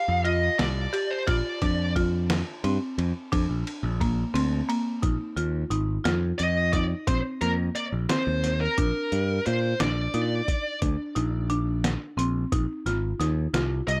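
A high-gain lead guitar, distorted and colored with tape echo, carries the melody over a growly picked bass, a buzzing, woody marimba playing arpeggios and a muffled, overdriven lo-fi sampler-style drum kit with a thumpy kick and fat snare in this bright, driving progressive instrumental in 11/8, where the kick and snare briefly drop out from 4.3 to 5.0 seconds before the band pushes into a new section.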